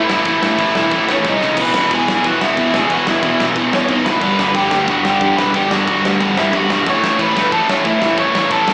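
Heard through a club PA with a small-speaker edge and light reverb, this upbeat, energetic punk rock clip charges ahead at 182 BPM in a straight 4/4, moving through A, C#5, E, G and A chords. A bright, double-tracked distorted rhythm guitar sits up front with its riff while a dark, high-gain lead guitar carries the melody, both touched with slapback echo, and a growly picked bass stays in the background. A big-room drum kit with a fat snare, punchy kick, crash cymbal and rolled-off top enters at 0.1 seconds and drives a fill from 1.3 to 1.6 seconds before the section repeats.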